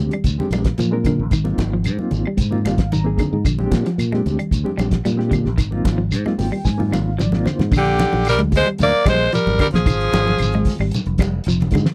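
A straight 4/4 afrobeat groove rolls along on a thuddy, cloth-damped drum kit with a fat snare and tight kick, a round, up-front fingered bass, and background claves, grainy shekere and bright, hard-handed congas, giving this cut from a longer piece a hypnotic, joyful feel in a dry, close 1970s-style studio sound. A clean picked electric guitar plays arpeggios throughout while a reedy electric piano with fast tremolo accompanies and adds fills until 7.7 seconds, its last fill ending together with a drum fill. At 7.8 seconds a gritty, raspy alto saxophone takes the melody over a vibrato-laden tenor saxophone second line with scooped notes, both playing until 10.8 seconds.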